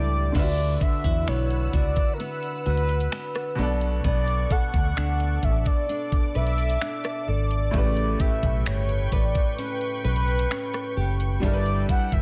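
Contemporary R&B in a dreamy, tender mood, this excerpt sets a horn-like synth lead with chorus and tape echo over a brilliant, worn grand piano, fingerpicked nylon-string guitar arpeggios, a lush detuned pad pumping beneath, and a round, foam-muted fingered electric bass up front, while a trap kit with a knocking kick, metallic hats, finger snaps and rim clicks enters at 0.3 seconds in a digital ambience.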